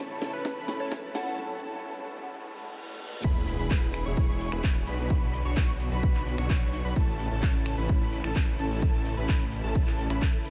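A festival progressive house build-up in A major at 129 BPM opens with a warm grand piano, very quiet bowed chamber strings, bright wave-folded unison arpeggios and lush phased supersaw chords, the piano, arpeggios and chords all pumping under sidechain. Meanwhile a house kit of cracking snare, metallic hats, snaps and claps plays a fill, a round FM synth lead briefly sings a gentle melody, and a punchy, up-front electronic kick arrives. A riser and reverse cymbal carry the break into the uplifting, anthemic drop at 3.2 seconds, where an impact lands alongside a sub drop and the piano stops. A thick detuned saw bass enters beneath the chords, which move from A through E and Bm back to A. The whole dreamy mix is soaked in a huge ambient reverb with tape echo on several parts, and the excerpt is cut from a longer piece.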